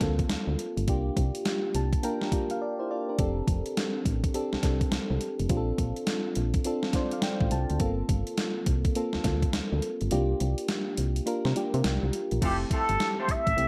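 New jack swing R&B with a slick, confident swagger, built on a soft, chorused FM electric piano that adds fills, a punchy, round FM bass and a thumpy, overdriven 12-bit drum machine with gated reverb, where the kick drops out from 10.1 seconds before a plunger-muted trumpet with scooped wah-wah notes and vintage horn-section stabs arrive at 12.4 seconds in this excerpt from a longer piece.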